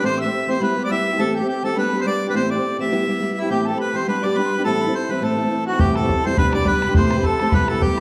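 Celtic folk reel, wild and driving, with a lightly swung lilt and an A minor cast, heard as a short section cut from a longer piece. A reedy, hollow accordion carries the melody close and dry, full and up front, while a wooden whistle with a pure tone, vibrato and a crisp chiff on each attack sits in the background as a second line above it. Fingerpicked steel-string acoustic guitar gives warm, prominent accompaniment, moving through Am7, Em/G and G. At 5.7 seconds a rich, nasal erhu adds a very quiet bowed line with vibrato and portamento, and at 5.8 seconds an open, boomy bodhran enters close and up front. The whole is heard from further back in a recital hall with a wet reverb.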